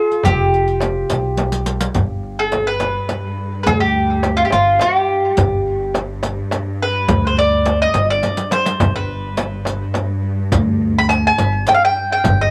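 A round, double-strung mandolin with tape echo leads this passionate, festive Persian modal ensemble piece in G dastgah homayun at 70 BPM in 6/8, joined by a shimmering hammered santur that rings in the background until 3.4 s, a tight tombak, a riq with dark jingles and a deep frame drum, with two drum fills along the way, a woody pizzicato upright bass, and a lush bowed cello section drone on G2 from 1.9 s, all in a small booth with a cassette home-recording character.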